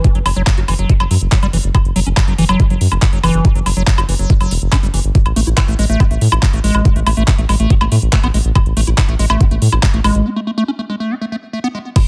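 Psychedelic trance at 141 BPM in a straight 4/4, this short cut from a longer track has a driving, psychedelic mood. An up-front electronic kick drum with a knocking, tape-tinged punch anchors the groove, joined by a garage drum kit of crash cymbal, handclaps, metallic hats and woodblock. Beneath them sits a round analog bass, deep and dark with a sawtooth-and-sine tone, fast attack and sustained notes, placed firmly forward in the mix. A squelchy, resonant liquid acid bass riff with a square-wave edge and filter sweeps moves between E3 and F#4, coloured by phaser, digital delay and sidechain pumping. The harmony shifts from F#5 to A5 at 5.2 seconds, and a break arrives at 10.3 seconds as the analog bass drops out, leaving the drums and the acid bass riff to carry the final moments in a digital ambience.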